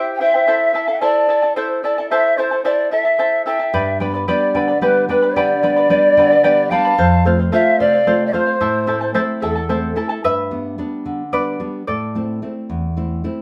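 A short cut from a longer Andean folk piece opens with the shimmering double strings of a fingerpicked charango and a breathy, end-blown large quena sitting in the background, joined almost at once by the pan flute carrying the melody. The mood is festive yet wistful, moving in 6/8 at 74 BPM in A minor, with the harmony passing through A minor, G and F. The pan flute is airy and mellow, with vibrato, a soft attack and rolled-off highs, while the quena adds a second line whose wooden, unsteady tone carries a crisp chiff. At 3.7 seconds a full-bodied nylon-string guitar enters up front, fingerpicking a deep classical accompaniment. Once both flutes stop, the charango takes a brief solo from 10.2 seconds, its octave-doubled strings ringing alongside the guitar as the chords move between G and A minor. A moderate studio reverb gives the ensemble a natural sense of space.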